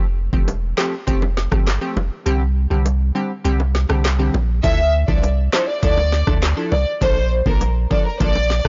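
A straight 4/4 dancehall groove at 101 BPM in D minor, hypnotic and bouncy, opens on a punchy sine sub bass with a pitch-drop attack and crisp wavetable chord stabs. An overdriven electronic drum kit with a knocking kick, woody snare, metallic hats, handclaps and rim clicks joins just after, followed by round, low-tuned acoustic bongos, while the kick drops out from 2.3 to 4.6 seconds. The detuned chord stabs, shaped by a filter sweep, move through Fadd9 and Csus2, then Dmadd9 and Bbmaj7, and at 4.6 seconds an intimate bowed violin section enters with light vibrato and digital delay. The dry, blown-out mix has a dark, clipped top end, and this clip is cut from a longer piece.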